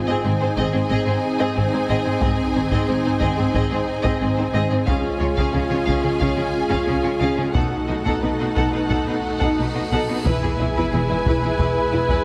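Heroic and majestic, this cinematic orchestral film-score passage moves at 90 BPM in a straight 4/4 in Ab mixolydian, cut from a longer piece. A lush string section holds soft-attacked, expressive sustained chords from the start, joined by distant, roomy French horns in the background, while the violins carry a smooth, vibrato-rich melody over a second violin line, focused violas, clear cellos and woody double basses. Close, dry taiko drums struck with heavy sticks enter at 2.2 seconds, as the harmony moves from Ab through Db to B7. A huge, bright cymbal swell and sub drop rises from 9.2 seconds into an impact at 10.3 seconds, where the chord shifts to E and a tight, dark trumpet section adds stabs on B4. The sound sits in a moderate scoring-stage reverb and is heavily compressed, giving it a dense, radio-like punch.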